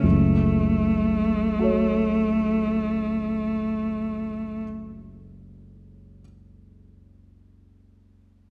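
In a slow, rubato 4/4, this elegiac, yearning fragment of a romantic classical duo sets a single bowed cello, rich and intense with vibrato and a smooth top, singing the melody up front until 4.6 seconds. A dark, mellow grand piano with short sustain accompanies from the deep bass to the middle register, continuing until 8.5 seconds. The pair sits in a wet recital hall with a lingering reverb.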